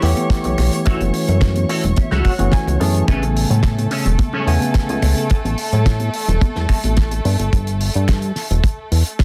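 Nu-disco with a groovy, feel-good lift, where an up-front, glossy, nasal chorused synth bass and a tight, dry kick drive a damped 70s kit with a fat snare, finger snaps and hi-hat, soft-handed congas sit in the background, a bell-like tine electric piano with delay and a dark envelope-filtered guitar riff with chorus and delay drop out around 5 seconds, a clean guitar fill arrives at 1.4 seconds, and a lush, smooth violin section holds sidechain-pumped chords over a dense, heavily limited mix.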